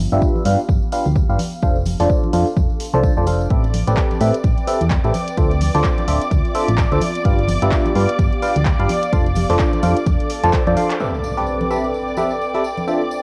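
A biting, percussive FM electric piano sits up front with a phaser and analog delay, playing a soulful, energetic riff over a 128 BPM piano house groove in A minor with a swung 16th feel, moving through G7, F6, Am9 and Dm9 chords. A punchy, round FM bass and a tape-warm analog kick drive it beneath an overdriven house kit of handclaps and hi-hat, close, dry tambourine and congas, and a breathy, mellow pad with chorus in the background, while veiled, con sordino studio strings enter at 3.5 seconds. After a drum fill, an electronic impact lands at 11.0 seconds in this cassette-recorded home cut with light reverb.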